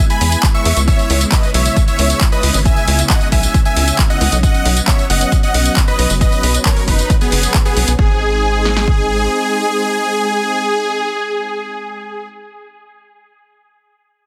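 A straight 4/4 pulse at 135 BPM drives this euphoric, soaring uplifting trance piece in G# minor, cut from a longer track: a punchy analog drum machine's kick and snare sit up front with a small-room character, an overdriven, layered techno kit adds handclaps, hi-hat and tambourine, a tight sawtooth sequencer bass pumps with sidechain through to 9.3 s, a huge, detuned supersaw lead carries the melody with dub echo and vibrato, and a silky, chorused string pad sustains chords moving from E through C#m7 and B before landing on G# at 8.0 s, the whole mix pressed into a heavily limited master with light reverb.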